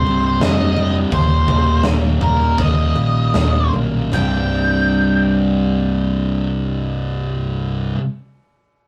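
Quiet-loud alternative rock in C minor, dark and angsty, moving at 74-87 BPM in a straight 4/4 and slowing down through the first 4.1 seconds as the chords shift from Cm to Eb before settling on Csus2. A thick, up-front fuzz guitar drives the riff while an octave-fuzz lead carries the melody, over full-bodied jumbo acoustic arpeggios and a growly, amped electric bass, with a big-room drum kit of punchy kick, medium-tuned snare, hi-hat and ride playing only until 4.3 seconds. Light reverb colours this rough rehearsal-room recording, cut from a longer piece.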